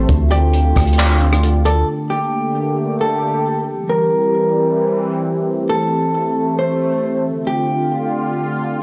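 A mellow electric guitar carries the melody across the whole of this short clip from a longer atmospheric cloud-rap track. Its clean, dark, fingered tone is compressed and set up front, trailed by spring reverb and tape echo. Beneath it, a sweeping resonant pad holds sustained chords with a bright, evolving, detuned sawtooth character, shaped by chorus and a slow attack and pumped by sidechain. Until 1.9 seconds, a very quiet string-like resonator pluck adds twangy, nasal arpeggios, while a deep, sine-toned 808-style bass and a compact cocktail drum kit of punchy kick, rim click, hi-hat and handclaps hold a half-time feel until 1.8 seconds. After that, guitar and pad continue alone through a melancholic, spacious progression from Gmadd9 through C and Am7 back to Dm7, framed by small room ambience and a dry, gritty hardware recording with cassette tape texture.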